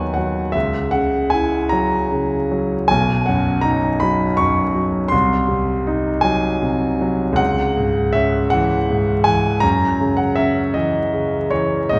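Tender and serene, this romantic classical nocturne for solo piano drifts in 12/8 at a slow 48-56 BPM counted in dotted quarters, with a free, rubato feel. The grand piano sounds clear, natural and intimate, placed up front with its action noise audible, and ranges from B1 to C#6 over a progression of B/D#, F#7/C#, B, G#7/B#, C#m and F#5. A wet concert hall reverb, heard from further back in the room, surrounds the playing in this 12-second passage cut from a longer piece.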